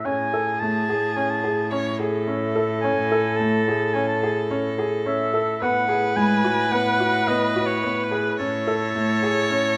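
A moderate recital-hall reverb surrounds this short extract of contemporary chamber music in 5/4 at 108 BPM, restless and shimmering in mood as it moves from F#m/A through G#m7/A to Amaj7. A solo oboe with light vibrato carries the melody, while an up-front viola sings a focused second line and a distant bowed cello with a reedy, gut-string tone holds a low A2. Underneath, a felt-muted upright piano plays soft, intimate arpeggios, and a slightly out-of-tune, bell-like celesta is barely audible, appearing only at the opening and again between 6.2 and 7.3 seconds.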